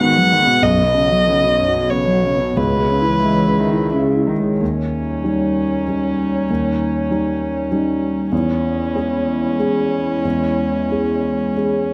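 A dark, worn grand piano with audible action noise opens this reflective, fragile neoclassical fragment in a rubato 3/4 at 86-100 BPM, joined from the start by a veiled con sordino violin melody with vibrato and plate reverb, a muted cello second line that drops out at 4.6 seconds, and a hollow, flute-like pad with chorus sustaining chords in the background of a moderate studio room.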